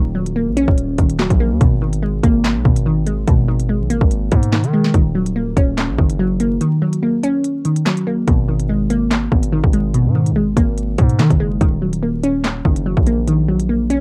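A glassy wavetable pluck sits up front in this dark, tense drill excerpt, its crystalline, mellow tone carrying a faint noise layer, a chorus shimmer and the softened grain of cassette tape as it outlines chords from D#m7 to G#madd9 in G# minor. Beneath it, a distorted 808-style bass delivers heavy, saturated low end with a fast attack and decaying tail, its sine core roughened by grit. The drill drum kit enters at 0.3 seconds, with a hard-clipped kick, sharp snare, crisp hi-hats and handclaps riding a half-time feel at 144 BPM, the kit also colored by cassette tape. The kick drops out from 6.6 to 8.3 seconds, opening a brief gap before a new section begins. The whole piece carries the feel of a home recording on cassette, with vinyl crackle and a moderate, tight booth ambience.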